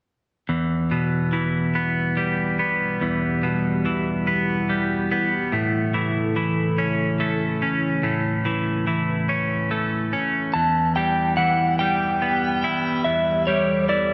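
Rock in 6/8, melancholic and cathartic, as a bright, twangy twelve-string electric guitar picks clean arpeggios through digital delay from 0.5 s, a dark, warbling analog pad with chorus settles in the background at 2.6 s, and a clean lap steel guitar enters at 10.5 s with a slide melody shaped by volume swells, the whole piece set in a lush hall reverb.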